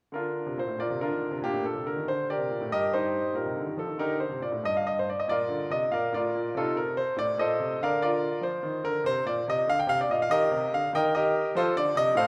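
Classical solo piano in the manner of a baroque-style suite movement, this brief fragment from a longer piece moves in a flowing, dance-like compound metre of 12/8, shaped with rubato. A concert grand carries everything alone from 0.1 to 12.3 seconds, its tone clear and polished, with a deep bass and long sustain. The piano sits up front and present, spanning from G2 up to G5. The harmony settles on the home chord, turns briefly toward its relative minor, and leans on subdominant colour before resting on the dominant at 11.5 seconds. A moderate concert hall reverb surrounds the instrument, adding a sense of space that suits the flowing, dance-like character of the movement.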